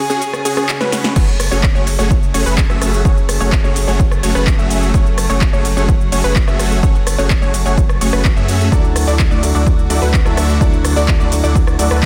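A straight 4/4 pulse at 127 BPM drives this anthemic, euphoric festival progressive house passage in F# minor, opening with a big-room dance kit of punchy snare, crisp tape-toned hats, handclaps, cabasa, rim click and cymbals beneath a huge, bright, detuned supersaw riff carrying phaser, delay and 12-bit grit, lush pluck arpeggios and reedy gut-string chamber strings that pump against the sidechain. After a drum fill, a punchy up-front electronic kick and a deep, thick, saturated sub bass land at 1.2 seconds, and a boxy concert grand piano with long sustain joins on a Dadd9 chord at 8.7 seconds, all under light reverb and a dense, heavily limited master.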